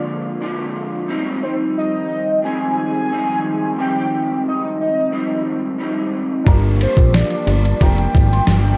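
A dark, warm production with a digital ambience frames this dreamy, laid-back bedroom-pop fragment, cut from a longer indie pop piece and moving at a relaxed 89 BPM in straight 4/4. From the start, a warbling, nostalgic synth lead carries the melody up front, its vibrato-tinged tone thickened by ensemble chorus and tape echo. Beneath it, an electric guitar through a small old amp plays slightly broken-up, lo-fi accompaniment with analog chorus and a wavering pitch drift, while a swirling, nasal analog pad holds sustained chords through a phaser. The harmony drifts from Bb7 to Abmaj7, then settles on Gm7 at 6.5 seconds, where the arrangement fills out. Just before that, at 6.4 seconds, a barky, lightly overdriven tine electric piano slips in at the back with its own accompaniment. At 6.5 seconds a gritty, sampler-style soul kit arrives with a thumpy kick, fat snare and ride cymbal, joined by a punchy, funky analog bass with a sharp filter pluck. 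In the background, a crystalline FM bell traces a short second line in its upper register.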